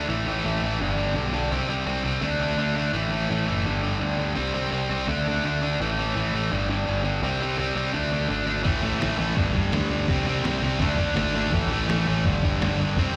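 A bright, distorted electric guitar leads this urgent, aggressive punk rock excerpt at 168 BPM, driving an A5–G–C5–D5 riff over a growling overdriven picked bass, until at 8.7 seconds a sludgy second guitar with slapback echo and a muffled, pitched-down lo-fi drum kit join in the background, all heard as a live gig through the venue's PA.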